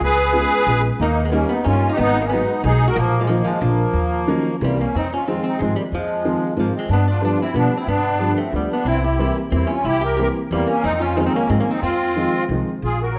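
A bittersweet, whirling musette waltz fragment with a rubato three-beat lilt, where the reedy, shimmering accordion carries the melody up front over a woody pizzicato upright bass with steel strings. A clear, slightly detuned upright piano with long sustain adds accompaniment from 0.3 seconds, and a clean, compressed hollow-body electric archtop guitar picks a second line through slapback echo from 1.0 seconds. Wet recital-hall reverb and worn, warbling cassette tape with pitch drift color the recording, and a new section begins at 4.9 seconds.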